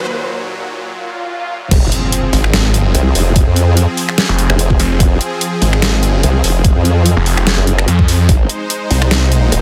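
A lush, detuned supersaw pad with sidechain pumping and an electronic riser and swell open this menacing heavy wobble dubstep cut at 146 BPM in F phrygian, then at 1.7 seconds the half-time drop hits with an impact, an overdriven knocking electronic kick, an up-front dubstep kit of deep snare, bright hats, finger snaps and crash, and a saturated formant-sweep wobble bass with chorus, joined at 2.3 seconds by a snarling, growling distorted saw bass, all inside a dense, heavily limited modern master.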